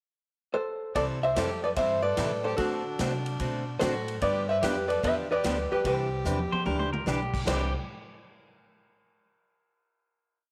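Swinging and down-home, this short, complete western swing piece in C major moves at 147 BPM in 4/4 with a swung eighth-note feel. A dark, clean hollow-body electric jazz guitar carries the melody up front from 0.5 seconds, playing motif-based song phrases partly doubled in thirds, while a clear, intense fiddle with light vibrato and a smooth top bows a harmony line mostly in thirds just behind it. The band enters at 1.0 seconds after a pickup bar: a bright, boxy acoustic archtop guitar picks four-to-the-bar rhythm with audible finger squeak, a woody, thumpy upright bass walks underneath, and a big-room drum kit drives with a backbeat, a ride cymbal pattern and a punchy kick. The chords move from C6 through D7 and G7 to Cadd9, and a drum fill at 6.3 seconds sets up the entry of a twangy pedal steel guitar at 6.5 seconds, adding volume swells, slide and answering blues licks into the final chord. 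Moderate spring reverb gives the whole band a natural, roomy studio sheen.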